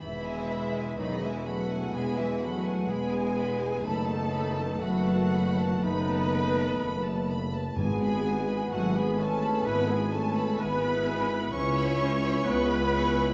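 Lyrical and tender, this slow romantic orchestral passage flows with rubato as a clear, distant violin section carries the melody over second lines from a bright flute section, a mellow clarinet and a lush second violin section, while expressive violas accompany, very quiet trombones and French horns hold sustained chords, a ringing harp plays arpeggios, a dark trumpet adds stabs in the background, rich cellos, double basses and a tuba anchor the bass, and faint timpani sound from 7.8 to 9.2 s, the whole ensemble set in a moderate scoring-stage reverb.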